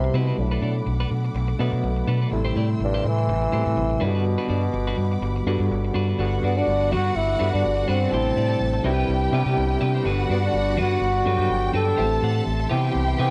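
Glamorous and danceable, this disco passage cut from a longer piece sets a vintage trombone melody over a punchy, overdriven fingered bass up front, a clean picked electric guitar, a barky, gritty tine electric piano with medium tremolo that adds a fill at 5.2 seconds, and dark, woody sul tasto studio strings holding sustained chords, before a lush symphonic violin section brings a smooth second line at 6.2 seconds, all in light reverb.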